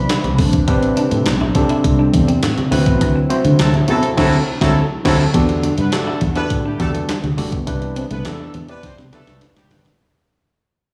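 Early-eighties boogie funk in E minor at 103 BPM, slick and funky, with a crisp 8-bit drum machine thumping up front with fat snare, handclaps and gated reverb, a round fingered electric bass, a barky overdriven tine electric piano, a compressed clean guitar riff bathed in lush chorus, a shimmering chorused pulse-width pad, and very quiet low-tuned congas, plus a distant horn section with vibrato arriving at 3.6 seconds during a band accent, before the excerpt fades out from 5.3 seconds under a closing drum fill at 8.8 seconds.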